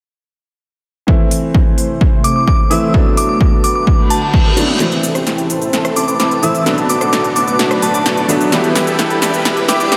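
A huge, cassette-tinged supersaw riff with a filter sweep surges in at 4.8 seconds over a very quiet, detuned saw bass, joining a worn grand piano and a lush, slow-blooming pad that both pump in time, an overdriven punchy kick, a crisp big-room drum kit that fills into the build-up, a glassy bell melody and a faint reverse cymbal and riser, all set in a dreamy, reverb-soaked mix for this euphoric, emotional festival progressive house excerpt.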